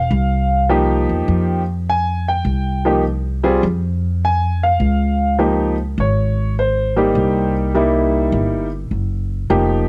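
A swung eighth-note feel at 102 BPM in 4/4 carries this late-night, moody jazz piano trio fragment in F minor, tuned to A4 = 441 Hz, moving from F7sus2 to Dbmaj7 at 4.8 seconds and C7#9 at 7.2 seconds. An intimate baby grand piano, with its action noise audible and a cassette tape coloring, carries the melody up front throughout the 9.9 seconds. A woody, thumpy pizzicato upright bass with gut strings holds the low end just as close, all set in light reverb with the homespun character of a cassette recording.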